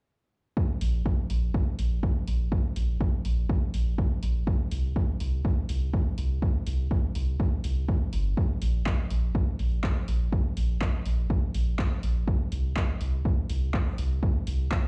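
Moody and warm, this deep house groove, cut from a longer piece, swings its 16ths as a punchy, tape-colored electronic kick drum sits up front from 0.6 s. A deep, full sub bass with an octave layer, sine- and triangle-toned with a fast attack and sustained notes, pumps against the kick through sidechain compression. Farther back, an analog drum machine adds handclaps and hi-hat, while the whole recording carries a cassette-tape grain and the sound of a big system playing in a bare room.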